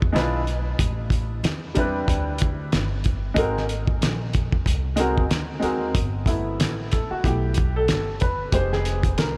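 An upright piano with a lush chorus sits up front in this jazz-hop fragment, laying down mellow accompaniment from 0.1 seconds before taking a solo at 6.0 seconds. Beneath it, a cloth-damped, thuddy drum kit plays hi-hat, kick and snare at a relaxed 93 BPM in 4/4, its 16ths given a gentle swing. The drums carry a lo-fi, small-room character: a fat snare, a tight kick, gritty saturation and a muffled, rolled-off top. An acoustic upright bass, plucked pizzicato on steel strings, adds a woody, thumpy low end. The harmony drifts through jazzy colours such as E7b9, Am11 and Ab9 before settling on G69 and Fm7, giving the whole a cool, unhurried mood under a light reverb until 9.4 seconds.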